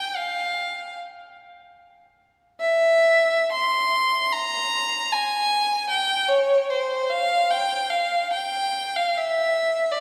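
A clear, bowed solo violin sits up front yet heard from further back within a wet church reverb, playing a meditative, mournful classical passage in 3/4 with rubato and uneven beats, its smooth, even vibrato line ranging from C5 to C6 across this 10-second cut from a longer piece.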